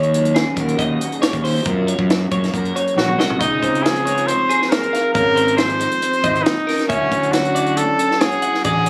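Math rock and midwest emo with a wistful, bright mood, this short excerpt opens with a bright twelve-string electric guitar playing twangy arpeggios through lush chorus and slapback echo, over a dark, slightly broken-up electric guitar in the background, a growly fuzz bass and a dry, punchy cocktail drum kit with a high-tuned snare. Alongside a drum fill at 3.0 seconds, a clear trumpet enters up front with vibrato and a smooth top, carrying the melody with its own slapback echo as the chords move from Ebm7 and Gbmaj7 to Dbmaj9 and Dmaj9. The whole thing sounds captured on a phone in a club, with light reverb and room ambience.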